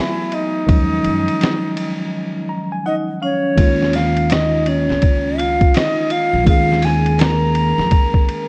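A dark, lightly reverberant mix sits in a small room, giving this short cut from a longer jazz-hop track a cool, smoky mood with a swung hip hop feel. An airy, hollow metal flute carries the melody up front in a straight tone, while a vibraphone struck with hard mallets rings beneath it as a second line, its slow motor vibrato adding shimmer. A worn, slightly out-of-tune tine electric piano, lightly overdriven through its built-in speakers, supplies the chords, moving from Gbm11 to Ebm11 and later to Eb9sus4. A compressed, muffled sampler-style drum kit enters at 0.3 seconds with a thumpy kick, medium-tuned snare, hi-hat and ride, and a woody pizzicato upright bass on steel strings joins at 0.7 seconds. During a break the electric piano plays a fill, before the piece moves into a new section at 3.6 seconds.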